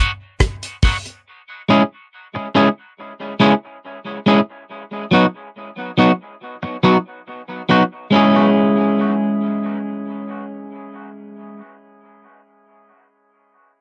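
Recorded at home onto cassette, this short cut from a longer dub reggae piece sits in a booth with a modest, brief ambience that keeps the sound close and intimate. An electric guitar, bright and twangy and just on the edge of break-up, carries the accompaniment through the whole passage. It is filtered of its low end and trailed by dub echo. A damped 70s drum kit appears only briefly, from 0.4 to 1.2 seconds, its hi-hat, tight kick and rim click sounding dry, airy and polished up front. The harmony rocks between B and C# minor, and a new section begins at 8.1 seconds as the chords return to C# minor. The mood is hypnotic and meditative, with the picked guitar and its repeating echoes holding the listener in a slow, steady trance.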